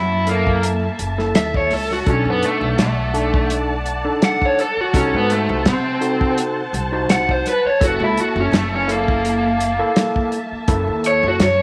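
This gritty, laid-back soul blues excerpt opens straight into an overdriven electric guitar solo, raw and picked with a lo-fi edge, sitting up front over a straight-eighth groove at 84 BPM with a light sixteenth-note swing. A muted string section plays bowed sustained chords beneath it, dark and veiled with soft attacks and vibrato, while a woody pizzicato upright bass anchors the low end. From 0.3 seconds, an overdriven tine electric piano adds accompaniment through a combo amp, and a dry, muffled soul drum kit enters with hi-hat, a tight kick and a medium-tuned snare, its top rolled off. The harmony moves through F#7#9, B7#9 and Cdim7 before returning to F#7#9 at 7.8 seconds. A moderate echo-chamber reverb gives the whole a roomy studio depth.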